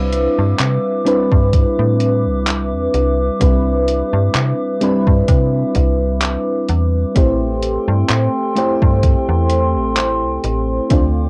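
A slow, lightly swung 4/4 pulse sets a faded, nostalgic vaporwave mood in this short clip from a longer piece, with a detuned 8-bit digital drum machine ticking out handclaps and hi-hat from the start and a thumpy electronic kick joining at 1.3 seconds. Both drum parts carry a cassette-tape softness, as if re-recorded in a small room. Up front, a round, dark FM electric piano plays the accompaniment with a faint noise layer, its tone thickened by analog chorus and tape echo. Beneath it, a slap-like FM bass gives snappy, metallic attacks that then decay. High above, a warbly, detuned tape-like pad holds long, slow-blooming chords bathed in chorus and reverb. The harmony rests on Cmaj9 before shifting to Am7 at 7.2 seconds, all captured in a modest booth ambience with the hazy character of a home cassette recording.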